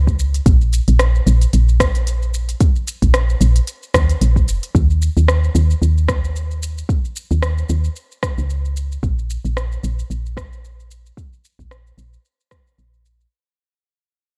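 A woody, round FM bass with sidechain pumping sits up front in this hypnotic, mystical organic downtempo excerpt at 112 BPM with swung 16ths, joined by a deep electronic kick and a produced afro-pop kit of smooth hi-hats, rim clicks and shaker in small-room ambience, while from 4.7 seconds a filter sweep runs over the bass as the dark, dry mix fades out.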